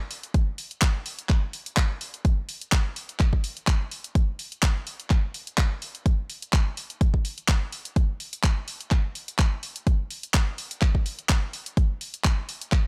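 A punchy electronic kick drum drives this short house excerpt, sitting up front with a tape-warm, layered character and the air of having been re-recorded in a large room. A house drum kit of handclaps and hi-hat opens the excerpt, sharing that same layered, room-recorded color and placed up front, with the kit starting at 0.1 s and the kick joining it at 0.3 s. The groove moves at 126 BPM in 4/4, with a light 54% swing on the sixteenths giving it a loose, energetic push. Both parts run until 12.8 s through a single section, and the mood lands somewhere between bittersweet and energetic. The overall sound is dry and gritty, carrying the saturated edge of hardware transformers with little reverb.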